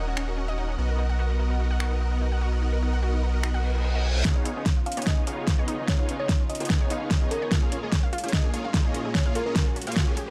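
This dreamy, emotional future bass excerpt opens on a huge, detuned supersaw riff with analog chorus, vintage 12-bit sampler grit and delay, over a deep, saturated sub bass, while a smooth bowed string section holds chords and a bright, wave-folded unison pluck plays arpeggios in the background. A half-time pop drum kit with a fat snare, metallic hats and finger snaps enters almost at once, and the synths, strings and bass all pump with sidechain. A very quiet reverse cymbal and riser join before the sub bass drops out at 4.2 s, and a punchy, up-front electronic kick arrives at 4.3 s as a build-up with a drum fill begins. From 4.9 s a bell-like FM electric piano adds a sparkling, mellow melody coloured by chorus, cassette tape and tape echo, over chords moving from Db9 to Bbm7. The mix is dry, with little reverb.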